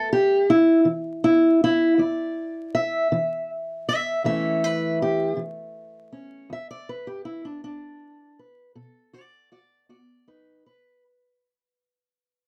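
A straight 12/8 pulse drives this rollicking, gritty fragment of acoustic country blues, where a lone fingerpicked steel-string parlour guitar, dark, boxy and up front, moves through A5, Dsus2/E, A, E5 and B7 while fading out across its 11 seconds, captured dry and close in a 1970s-style studio booth with vinyl crackle.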